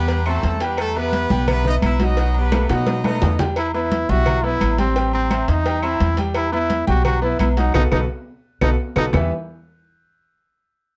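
A clear, close-miked horn section opens this passionate, danceable salsa excerpt, playing a loose melody in octaves over bright grand piano chords with long sustain and an up-front, thumpy pizzicato upright bass with gut strings. Congas, cowbell, bongos, agogo bells, timbales and claves fill in the percussion: the damped, high-tuned congas sit in the background, the cowbell and bongos sound tight and saturated, the metal-shelled agogo bells and timbales ring in a live room, and the woody claves click close and dry. Drum fills push the band forward as the horns give way, and at 3.6 seconds a brilliant solo trombone takes over up front with vibrato and a punchy, close-miked attack. The harmony moves through minor chords and a dominant turnaround, with the whole band accenting the last push before landing on a bare chord at 9.1 seconds. A touch of reverb and a dark, rounded production keep the sound full and intimate.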